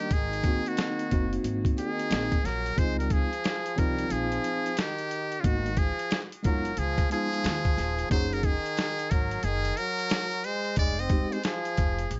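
This jazz-hop excerpt moves at 90 BPM in a smooth, cool mood, its sixteenths swung against a boom bap sampler-style drum kit that sounds compressed, pitched down and gritty, with a thumpy kick, a medium-tuned snare and hi-hat. A metal-muted trumpet carries the melody up front, buzzy and thin with vibrato and scooped notes, close-miked and touched with tape echo. Beneath it a bright, forceful trombone plays a second line in jazz style, punchy and bending into its notes with vibrato. A mellow tine electric piano supplies clean accompaniment through its built-in speakers and drops out at 11.4 seconds, while a woody, growly upright bass plucks low and dark under the changes from Ab7 through Dbmaj9, Abm7, Db7 and Gb6 to Fm7. The small room adds a moderate, short reverb, and the overall sound is rolled off in the highs.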